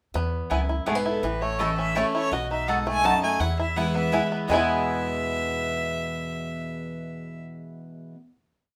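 A straight 3/4 lilt at 166 BPM drives this short, lively and virtuosic bluegrass piece in E major, moving through E, A, B7 and back to E before landing on a final chord at 4.5 seconds. The clear fiddle enters at 0.9 seconds with an earthy, lightly vibrato fiddle tune in running eighth notes. Up front beside it, the twangy banjo spins percussive three-finger rolls, and the bright picked guitar alternates bass and strum with bass runs. A round, double-strung mandolin chops on the off-beats, and the thumpy gut-string upright bass plays root and fifth with walk-ups, all in a moderate studio reverb.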